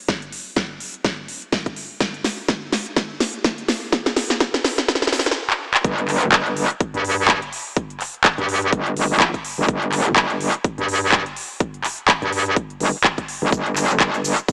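A gritty bass house build-up opens the track, with a big-room dance drum kit and a punchy electronic kick driving forward under drum fills that run through the first 5.8 seconds. The kit is layered and up front, with a huge snare, crisp hats, handclaps and shaker, all given a tape-warm polish, and the groove swings on the sixteenths. At 5.8 seconds the drop lands and a metallic wobble bass joins the kick in the low end, aggressive and bright, its sustained FM tone thickened by distortion, chorus and tube saturation and pumping against the sidechain. The mood is aggressive and hard-edged, the bass snarling up front in the mix. Light digital reverb surrounds the mix, while a high-pass filter gives the whole thing a thin, small-speaker character in this short cut from a longer piece.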